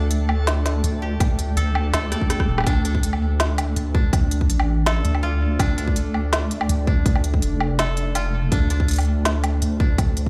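Spacious and cinematic, this half-time drum and bass moves at 164 BPM in D minor with a light swing, built on a deep, moody ambient pad of sustained chords that pumps with sidechain and a dry, woody koto playing fingerpicked arpeggios through tape echo. A soft, saturated and detuned wobble bass sits up front, while a reversed, dreamy swelling texture hovers in the background until 2.7 seconds. An overdriven organic electronic kit of snare, smooth hi-hats, rim clicks and woodblock comes in almost immediately, a hard-clipped electronic kick joins it at 1.2 seconds, and a drum fill from 2.1 seconds leads into the second drop.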